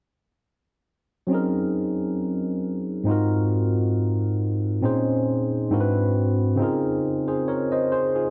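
A bright, barky electric piano plays alone from 1.3 to 8.3 seconds in this smooth R&B fragment, its tines lightly overdriven through a combo amp and sitting up front with subtle chorus and slapback echo. The unhurried, gently swung sixteenth-note feel moves through lush extended chords, from Gb69 and Ab9 to Bbm11 and an altered Ab7 before settling on Dbmaj9. A wet studio reverb and a dark, warm production wrap the piano in a warm glow.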